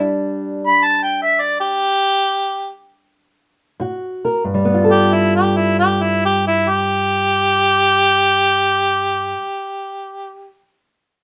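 Acoustic country blues for harmonica and guitar, soulful and gritty, in a swung 4/4 feel, cut from a longer piece with a slowing, stop-time opening before a second section begins at 4.4 seconds. A mellow, vintage harmonica carries the melody up front with light vibrato and scooped notes in a jazz-tinged solo voice, lasting until 10.6 seconds. Beneath it, a fingerpicked ladder-braced acoustic guitar with old strings gives a dark, woody, boxy accompaniment until 9.7 seconds, both set in a moderate studio reverb.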